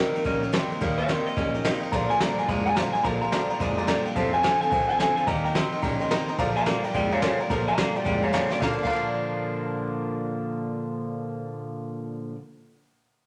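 Rockabilly at a swung 215 BPM in Bb mixolydian, this upbeat, rowdy excerpt puts a bright, slightly broken-up lead guitar from a small old amp on the melody over a clean, compressed twangy electric riff and a full-bodied steel-string acoustic with audible finger squeak. A woody, thumpy pizzicato upright bass sits in the background, while an up-front brushed drum kit with a fat snare and dark cymbals plays a fill at 8.5 seconds and stops at 8.9 seconds. A vintage upright piano with short sustain joins at 1.9 seconds, all set in a moderate large studio reverb.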